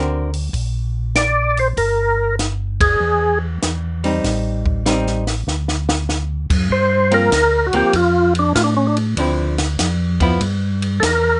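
A gritty, overdriven tonewheel organ carries the melody from 1.2 s in this smoky, bluesy soul jazz organ trio in G minor, its percussive second-harmonic attack turning through a slow rotary speaker and chorus vibrato over a swung 4/4 at 97 BPM. Beneath it, a round, dark tonewheel organ plays the bass with its own slow rotary and chorus vibrato, while a compact cocktail kit with a high-tuned snare and punchy kick adds a drum fill, and the band hits a sharp accent together early on. A clean, hollow-body archtop guitar accompanies briefly at the very start and again from 4.0 s to 10.4 s in light reverb as the harmony moves through chords such as Gm, Am7b5 and Gm11, in a passage cut from a longer piece.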